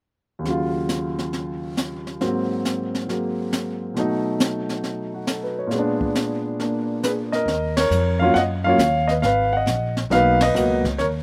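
Swinging at 137 BPM in 4/4, this cool jazz piano trio excerpt opens with an intimate, up-front grand piano carrying the melody over Ebm9, Ab9, B7 and Bb7b9 chords, its action noise audible and its notes sustaining long, while a brushed kit with dark cymbals, a high-tuned snare and a boomy kick keeps time, until a woody, growly pizzicato upright bass joins at 7.5 s as the music settles into Eb minor, with band accents following at 7.7 and 10.3 s, all heard in a dry outdoor sound.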